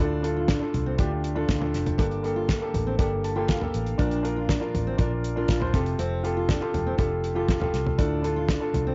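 This home recording on cassette has its top end rolled off above 7.6 kHz, with light reverb and a small-room ambience around the players. It is an excerpt of piano-driven pop at 120 BPM in a straight 4/4, anthemic and warm in mood, moving through Dm, Gmadd9, Bb and Fadd9 before returning to Dm. An upright piano with a woody, natural tone and a cassette-tape colour sits up front carrying the accompaniment, and it plays a fill between 3.0 and 4.0 seconds. A full-bodied jumbo steel-string acoustic guitar, also tape-coloured, fingerpicks a riff in the background, while a dark, round, foam-muted electric bass, amped and played with the fingers, holds the low end. A damped 70s drum kit enters at 0.2 seconds, dry and up front, with a fat snare, a tight kick, hi-hat and toms.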